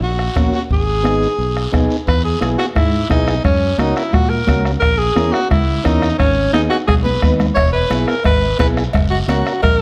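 A dark production sits in a moderate recital-hall reverb, framing this driving, danceable cumbia cut from a longer piece, moving at 175 BPM in a straight 4/4. Up front, a breathy alto saxophone carries the melody with a soft attack, light vibrato and an intimate, whispered pop-style tone, ranging from C#4 to C#5. Beneath it, a round, punchy fingered electric bass holds the low end. An overdriven vintage combo organ adds mellow, wavering accompaniment from 0.4 s. The percussion bed blends a close bombo struck with a soft beater, bright high-tuned congas played with soft hands in the background, and a raspy guiro. A drum fill at 7.1 s leads into a distant, ringing cowbell that enters at 7.6 s, as the harmony cycles through chords like F#, G#m, E and A#dim.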